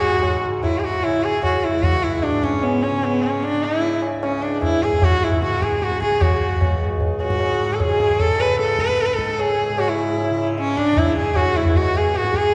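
A clear, focused sarangi sits up front, its bowed line gliding with light vibrato and portamento over ringing sympathetic strings in this solemn, longing Hindustani passage in raga bhairavi on C#, moving at 151 BPM in a straight 4/4. Beneath it a softly plucked tanpura holds a buzzing, shimmering drone, while a low-tuned tabla with a short ring and a small-room character joins at 0.2 s. The whole fragment, cut from a longer performance, is bathed in the wet reverb of a church or concert hall, with a mellow top end.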